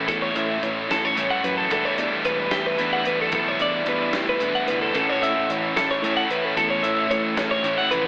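A lush, wet hall reverb gives this short math rock and midwest emo cut a big arena sound, tinted by an AM radio quality. Set in A mixolydian at 74 BPM in a straight 6/8, the mood is intricate and playful, moving from A6 to Em11 at 1.7 seconds and back to A6 at 5.0 seconds. Up front, a bright, twangy twelve-string electric guitar picks clean, compressed arpeggios through a digital delay, alongside a double-tracked overdriven electric guitar carrying the riff. In the background, a dark, fingered electric guitar adds mellow accompaniment with warbly pitch drift and slapback echo. A growling fingered bass, warm and overdriven, enters at 0.1 seconds with a modern studio drum kit recorded in a small room, where a punchy kick, a medium-tuned snare and hi-hat drive the groove.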